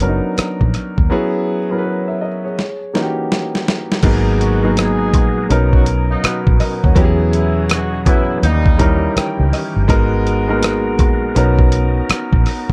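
Late-night and smooth, this slow R&B and neo-soul groove sits at 82 BPM in G# minor with a swung sixteenth-note feel, cut from a longer piece. A warm concert grand piano carries the accompaniment up front, intimate and natural with audible action noise, deep bass and long sustain, while a vintage foam-muted fingered electric bass adds a dark, round, punchy low end. The dusty sampler-style drum kit is compressed and gritty, with a thumpy kick, a medium-tuned snare, rim clicks, hi-hat and crash, sounding re-recorded in a small room and placed up front. A break runs from 1.1 to 4.0 seconds with a drum fill, and at 4.0 seconds a bright, reedy tonewheel organ enters in the background with key click, chorus vibrato and a fast rotary speaker, holding sustained chords over lush changes such as Bmaj9, E6, D#7b9 and G#m9. A distant, roomy horn section adds tight, clear stabs with light vibrato until 9.1 seconds, and the piano slips in a fill from 8.4 to 9.9 seconds. 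The production is dark and warm overall, lightly touched with reverb.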